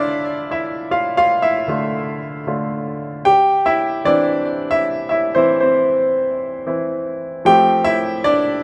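A clear concert grand piano carries this brief pop fragment entirely by itself, sitting up front with a deep bass and a polished, present tone whose notes die away quickly. The mood is hopeful and anthemic, moving at 114 BPM in a straight 4/4 in C major, with the piano ranging from D3 to G5 and a touch of delay on its sound. The harmony opens on Dm, shifts to Cadd9/E at 3.3 seconds, and reaches Fadd9 at 7.5 seconds before the cut at 8.6 seconds. A moderate, lush hall reverb surrounds the instrument, lending it space. The overall mix has the rough character of a home demo, cut from a longer piece.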